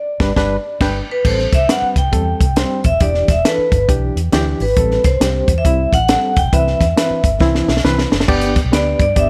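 A swung 136 BPM groove in 4/4 drives this uptempo, danceable 1960s-style soul clip, built on a compact cocktail drum kit with a high-tuned snare, punchy kick and dark cymbals, and on a round, foam-muted electric bass. A reedy electric piano with tremolo supplies the chords over a G, Am7, Em7, Am7, Cmaj7 progression, while a ringing vibraphone, played with medium hard mallets and a medium motor vibrato, carries the uplifting melody. The band hits an opening accent from 0.0 to 1.3 seconds, and a drum fill at 7.4 seconds leads back to G at 8.3 seconds, with the drums set in a small, close-sounding room.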